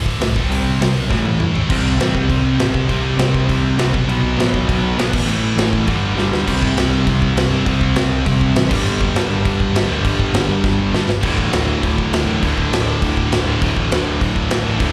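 Heard as a live gig through the venue's PA, this punk rock excerpt carries small-room ambience and a recital-hall reverb, with the punchy kick, medium-tuned snare and bright cymbals of a big acoustic kit sitting up front from 0.1 seconds. Three picked guitars drive upbeat, rebellious riffs throughout: a bright distorted one in the background with slapback echo, a high-gain double-tracked one also treated with slapback echo, and a warm overdriven one. Beneath them, a growly, amped bass pushes the low end while drum fills mark the turns at 1.1, 6.2 and 10.6 seconds.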